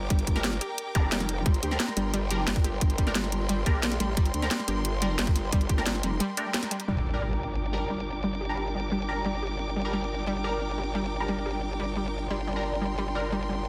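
A dense, heavily limited mix with light reverb carries this mechanical, aggressive dark technical drum and bass excerpt at 177 BPM in G minor, where a saturated, wobbling growl bass sits up front under a cracking-snare, overdriven kit and tight electronic kick, the kick dropping out at 5.8 s and the kit at 7.0 s, while a bowed string section holds sustained chords, a round detuned analog pluck runs arpeggios that get a filter sweep from 6.9 s, a nasal band-passed stab adds ring-modulated hits, and an electronic zap and impact land around 1.0 s and 6.9 s after a short break.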